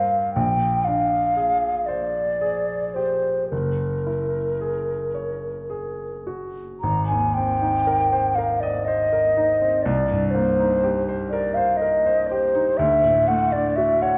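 Set in 6/8 with free, rubato timing, this impressionist classical duo drifts along at a very slow pulse of about 34-41 BPM, counted in dotted quarters. The mood is dreamy and pastoral, grounded in Ab lydian with the instruments tuned to A4 = 442 Hz. A concert flute carries the melody from Bb4 up to Bb5 with a pure, hollow tone, vibrato, soft attacks and lifted highs, sitting up front in the mix. Beneath it, a baby grand piano supplies intimate, natural-sounding accompaniment reaching down to Gb1, with its action noise audible. Both instruments play throughout the roughly 14-second passage, which shifts into a second section at 6.8 seconds as the harmony moves from Bb13 and Gb9 through Abadd9 and Cm7 to a closing D chord. A recital hall reverb with a 1.6-second decay, captured in a church or concert hall, gives this fragment of a longer piece a soft, spacious glow.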